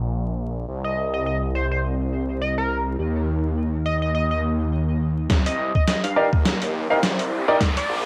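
Glitch hop with a funky, gritty mood, cut from a longer piece and recorded at home on cassette with vinyl crackle and light digital ambience. A swirling, thick phased saw bass holds down the low end from the start, joined at 0.8 seconds by an edgy, tearing sync lead with chorus, vibrato and tape echo over a C minor chord. At 5.3 seconds a build-up begins as a compressed, pitched-down kick and a boom bap kit with hi-hat and snare enter with a drum fill, while worn, brilliant grand piano stabs with sidechain pumping and an electronic riser join in the final seconds.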